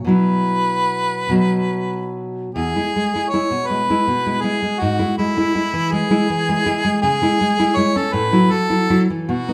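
A moderate recital-hall reverb surrounds this lyrical, warm romantic duo in E major, cut from a longer piece and moving in a rubato 6/8 at 47-55 BPM in dotted quarters, with an acoustic, fingerpicked nylon-string guitar of deep classical tone sitting up front beneath a soft-attacked harmonica melody, played in classical style with light vibrato, while the harmony eases from Bsus4 and B onto E at 2.5 seconds, then on through E/G#, C#m and F#m7/A.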